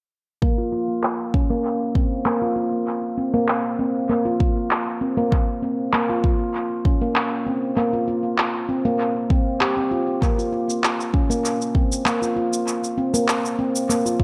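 An echo-heavy mix steeped in moderate spring reverb frames this meditative, earthy organic downtempo excerpt at 98 BPM in Bb dorian: a dark, ringing nitrided-steel handpan with sharp finger strokes plays arpeggios through tape echo and a filter sweep, alongside a deep, tape-warm electronic kick drum that also carries a filter sweep, both from 0.4 s, joined at 1.0 s by overdriven, layered electronic handclaps and shaker with dub echo, all three parts sitting up front.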